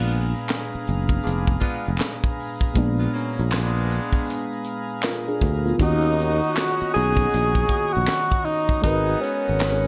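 A breathy tenor saxophone carries the melody in this soulful, smooth neo-soul and R&B excerpt, entering up front at 5.8 s with a whispered, intimate jazz tone, scooped notes and vibrato. Beneath it, a mellow FM electric piano plays round, dark, warbling chords with a vintage noise layer and chorus, while a pedal harmonium holds reedy, breathing sustained chords in a boxy small room. An edgy, tight saxophone section adds soft-attack stabs with a slapback echo from the background, and a fretless electric bass sits up front with a growly, direct sound. A tight funk drum kit with a high-tuned snare, kick, hi-hat and handclaps drives a 79 BPM groove in 4/4 with a swung sixteenth feel, backed by a tube shaker and finger snaps. The harmony moves from Bb7b9 to Ebm7 as the piece settles into Eb minor, then to Abm9 at 8.8 s, all under a light reverb.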